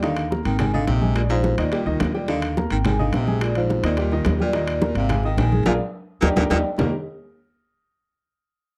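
A sunny, lively Afro-Cuban jazz groove at 213 BPM in Eb major opens with the whole band at once: a soft-mallet vibraphone carries the mellow, airy melody with a medium motor vibrato, a baritone saxophone with vibrato plays a second line beneath it, and a baby grand piano with natural, short sustain provides the accompaniment. A woody, dark pizzicato upright bass sits up front, with ringing congas in the background, tight high-tuned bongos kept very quiet, and metal-shell timbales. A drum fill and band accent arrive at 5.7 seconds in this dry, close 1970s-style studio recording, cut from a longer piece.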